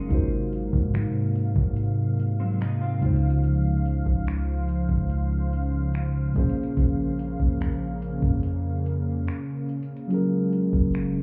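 A smooth contemporary R&B drum kit sets a straight, unhurried 4/4 groove, with a knocking electronic kick, metallic hi-hats and finger snaps sitting up front. A long 808-style bass anchors it with a deep, sine-like tone that hits with a fast attack and then decays. A mellow tine electric piano carries the accompaniment in a clean, direct voice, moving through lush extended chords from Ab13 to Dbmaj7, Bbm9 and Gbmaj9. Underneath, a smooth analog pad of detuned sawtooth sustains chords with a soft attack, long release and chorus. A clean, picked electric guitar adds compressed arpeggios soaked in lush chorus and digital delay, but only until 3.2 seconds. The mood is dreamy and tender, yet the whole mix sounds muffled, as if heard through a wall with club reverb, and the clip is cut from a longer piece.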